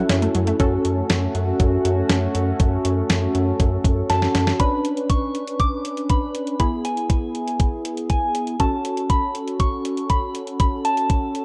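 Melancholic and cool, this dark synth-pop excerpt rides a clean 12-bit digital drum machine with a thumpy kick and fat snare, where a punchy, funky polysynth comp runs throughout while a shimmering chorused pulse-width pad, a round analog pluck with delay and a rubbery square bass open the piece, before a drum fill at 4.1 seconds brings back a pure, gentle synth bell melody coloured by chorus and phaser.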